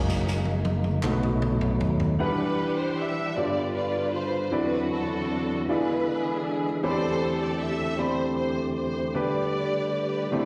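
Slow gospel in 6/8 and G major at 52 BPM, hopeful and uplifting, heard as a live gig through the venue's PA with recital hall reverb. A dark, intimate grand piano with audible action noise and a fat, lightly overdriven tonewheel organ with key click, chorus vibrato and a slow rotary speaker play throughout, the organ taking a solo in the first 2.2 seconds. A round, punchy fingered bass and a swinging big-band kit with snare and tom fill, joined briefly by a hollow group handclap around the one-second mark, drop away as a lush, woody string section with slapback echo takes the melody from 2.2 seconds over chords moving from Em9 to G/D.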